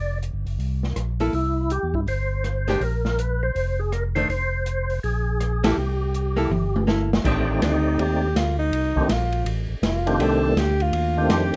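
A rough home-demo mix in a moderately ambient studio catches a short, bluesy, swinging soul jazz organ trio passage, cut from a longer piece, where a fat, lightly overdriven percussive tonewheel organ carries the melody with key click, chorus vibrato and a slow rotary speaker over tonewheel organ bass, a dark, boomy-kicked acoustic drum kit with dark cymbals and a rolled-off top, and a clean, compressed hollow-body archtop guitar comping from 1.2 seconds, before a band accent at 5.6 seconds and a drum fill lead to a clear, close-miked alto saxophone solo entering at 7.6 seconds.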